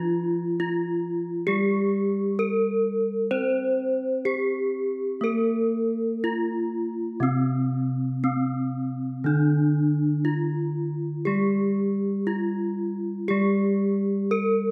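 Serene and shimmering, this short passage of gamelan music, cut from a longer piece, moves at an unhurried 59-69 BPM in a straight 4/4, set in C slendro. Two bronze metallophones share the texture: one carries the melody in the register from C4 to C5, while the other supplies accompaniment an octave lower, from C3 to C4. The melodic instrument, struck with a horn mallet, sounds bright, full and close-miked, its paired tuning producing beating tones that give it a living shimmer. The accompanying metallophone rings with an airy, metallic bronze tone, and both sit up front in the mix. A recital hall's reverb, lasting about 1.5 seconds, surrounds the ringing bronze, and the music shifts from its opening section into a second one at 7.2 seconds before the passage ends at 14.7 seconds.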